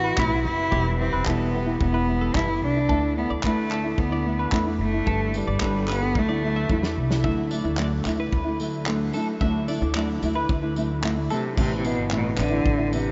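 This carefree, sunny acoustic pop excerpt opens with a clear, focused bowed cello carrying the melody with vibrato, set up front over fingerpicked nylon-string guitar whose fresh strings let a little finger squeak through. Pizzicato upright bass adds a woody, thumpy low end on gut strings, while a twelve-string electric guitar, picked, clean and compressed, spins bright arpeggios through analog chorus and a diffuse ambient delay that also trails the cello. A loose indie drum kit joins at 0.2 seconds with a punchy kick, medium-tuned snare, dark cymbals, handclaps and tambourine, moving at a straight 111 BPM in 4/4 through chords such as Amadd9, Em, Dsus2 and Gadd9. A drum fill from 6.2 to 7.2 seconds leads into a stretch where the cello rests; it returns at 11.3 seconds, the twelve-string drops out just after at 11.4 seconds, and the harmony comes back to Amadd9. The whole mix is dreamy and soaked in a huge ambient reverb with a long tail, its top end kept soft and hazy.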